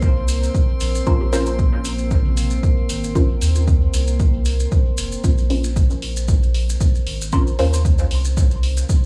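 Dub techno with a hypnotic, meditative pull, this short cut from a longer piece rests on a punchy analog kick and a round, soft sub bass held up front, while a dark, detuned sawtooth pad sustains a Bbmadd9 chord beneath muted, phased chord stabs trailing dub echo, all three pumping against the kick. Grainy maracas, a faint hi-hat with its own echo, and a brief touch of very quiet bongos and toms around 1.2 seconds fill out the groove, as a glassy texture of drifting overtones shimmers until 5.3 seconds. From 5.2 seconds a filter sweep moves across the stabs over the repeated section, all in a dry, small-room sound.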